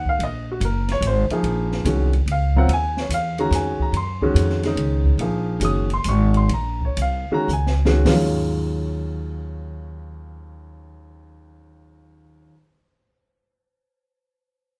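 Intense and searching, this modal jazz excerpt swings in 3/4 with a warm baby grand piano comping up front over a woody, thumpy pizzicato upright bass and an open acoustic drum kit with dark cymbals and a boomy kick, all in light reverb, as the music slows from 5.2 seconds and a drum fill at 7.5 seconds leads to the drums dropping out at 8.2 seconds, leaving piano and bass.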